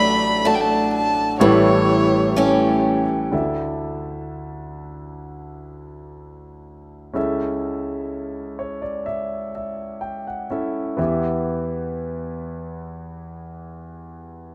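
A rough home demo mix sits in a moderate, lush hall reverb, giving this short cut from a longer piece a nostalgic, intimate air. It is an acoustic folk-pop ballad in D major at a slow 63 BPM, in a straight 4/4. A dark, bowed violin carries the melody up front, played sul tasto by one player with light vibrato, a soft attack and a smooth top, before stopping at 2.8 seconds. Beside it, a boxy old ladder-braced acoustic guitar picks arpeggios with finger squeak and a slapback echo until 3.4 seconds. The concert grand piano accompaniment, present from the start, then carries on alone to 14.5 seconds, its tone clear and polished, with deep bass, long sustain and audible action noise, as the chords pass from D/A and A7 through Dsus2 and A/C# to Em.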